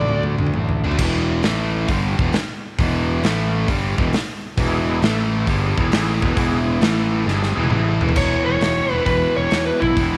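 Blues rock power trio with a southern rock streak, this driving, raunchy excerpt swings at 134 BPM in E mixolydian, built on a dark, double-tracked overdriven electric guitar riff, a growly fuzz bass and a big acoustic rock kit with bright cymbals and a punchy kick that opens on a drum fill. A gritty, thick tonewheel organ with key click and slow rotary speaker sits in the background from 4.6 seconds, and after another drum fill at 7.3 seconds the overdriven slide guitar, played with fingerpicks and carrying a slapback echo, steps up front for a short solo at 8.2 seconds. The mix sits in a small room with light reverb.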